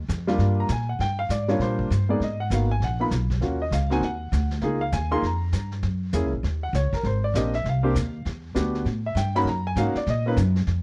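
A polished grand piano takes a solo across this short jazz piano trio excerpt, its up-front, present tone carrying a slapback echo as it ranges from Ab2 up to C6. The mood is playful and swinging, with a gentle swing on the eighth notes and harmony that drifts through colorful chords such as Abm9, Db6, Abmaj9#11 and a closing Gbmaj13. Beneath it, a woody, thumpy upright bass played pizzicato sits up front in the low register, starting at 0.0 seconds. A vintage brush kit of brushed snare, hi-hat, kick and snare sits mid-forward, with a punchy kick and a rolled-off top that give it a small-room softness. The whole trio has a dry, close sound in the manner of a 1970s studio session.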